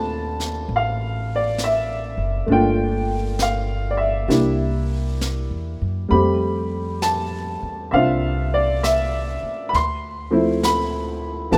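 Through light studio reverb and a rough home-demo mix, this tender, late-night jazz ballad moves at 67 BPM in a swung 4/4, with a slightly detuned, boxy upright piano up front on chords from Dm9 through Gm7 and C7 to Fmaj9, a woody pizzicato upright bass with steel strings beside it, and a small-room brushed kit of snare and hi-hat that enters at 0.4 s and sits lower in the mix.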